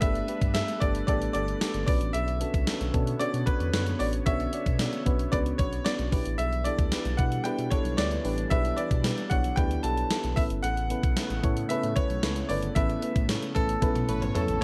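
Nostalgic and moody, this 1980s-style pop excerpt in B minor moves at 113 BPM, with a bright grand piano carrying the melody over a dark FM electric piano, a swirling phased analog pad, a smooth, nasal synth bass, thumpy up-front gated drum machine with a gated-reverb snare, a distant metallic cowbell, and a lush violin section that enters at 14.1 seconds just as a drum fill closes the passage, all set in a light digital ambience.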